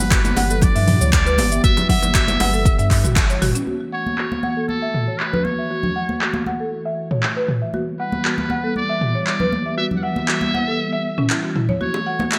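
A straight 4/4 afro house groove at 118 BPM in F# phrygian, hypnotic and spiritual, opens with an overdriven electronic kick and a round sine sub bass that both drop out by 3.5 seconds; an up-front deep house kit of metallic hats, finger snaps, handclaps, shaker and toms with gated reverb keeps going with bright, compressed congas, as tight, high-tuned bongos appear only briefly in the background. Above them a woody, buzzing marimba arpeggio picks up a filter sweep from 3.7 seconds, and a smooth, detuned sawtooth pad with chorus and sidechain pumping moves between G6 and F#m7. A thin, metal-muted trumpet carries the melody with vibrato, scooped notes and delay, set in a bright 1980s-style digital production with plate reverb.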